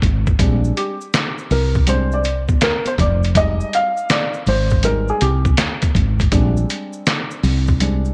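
Smoky and cool, this jazz-hop piece at 81 BPM rides a swung sixteenth feel on a muffled, pitched-down sampler-style drum kit with a thumpy kick, a round, punchy fretless electric bass up front, and soft-handed congas and maracas in the background, while a mellow, woody upright piano enters at 0.4 seconds to solo over Bb13 and Fm9 chords in light reverb.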